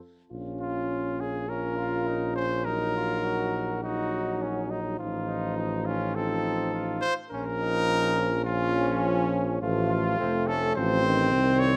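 A mellow, soft-attacked trumpet carries the melody up front from 0.6 seconds in this grave, solemn classical brass quintet excerpt with a rubato feel, joined at 1.5 seconds by a warm flugelhorn second line, while a French horn and a lightly vibrato-touched euphonium sit in the background and a smooth-topped tuba anchors the bass up front, all in a moderate recital hall reverb caught by close, detailed microphones.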